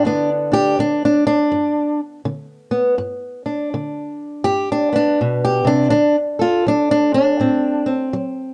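Laid-back and swaggering, this short excerpt of acoustic country blues moves at an easy 82 BPM in 4/4 with a swung eighth-note feel in G major. A single fingerpicked, ladder-braced acoustic guitar carries the whole piece, playing solo from 0.0 to 8.5 seconds across a range from G2 to A4. Its tone is dark, woody and boxy, with the character of old strings, and it sits up front in the mix. The harmony rests on G before moving to D7 at 5.9 seconds. Close, detailed microphones capture the instrument with only light reverb, giving an intimate, present sound.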